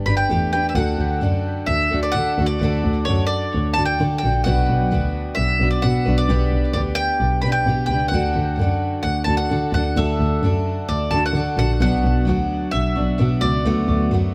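A straight 4/4 pulse at 130 BPM drives this jangly, nostalgic folk rock and heartland rock excerpt in D major, where an up-front, woody mandolin with double strings carries the melody and a full-bodied, picked dreadnought acoustic guitar with fresh strings and audible finger squeak accompanies it, both steeped in dub echo, over a dark, veiled double bass bowed con sordino with vibrato and a soft attack, in a light-reverb, echo-heavy mix as the chords move from Gadd9 through D, Bm and G/B before settling on D6.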